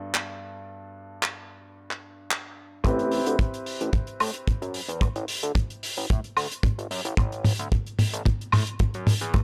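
A straight 4/4 nu-disco groove at 111 BPM opens on an intimate baby grand piano whose audible action noise comes through sidechain pumping, a low-pass filter and tape echo as it sits on Gmaj9 in A dorian, joined almost at once by a damped 70s drum kit, dark and dry with handclaps, hi-hat, toms and woodblock in studio reverb. At 2.8 s a tight, up-front kick and a fat, thick analog bass of sawtooth and square waves arrive, the bass high-pass filtered with a filter sweep and moving notch, and from 2.9 s the harmony moves to Am9 while a drum fill drives a build-up to the close. This sleek, cosmic fragment has a gritty hardware sound with transformer saturation in a small room.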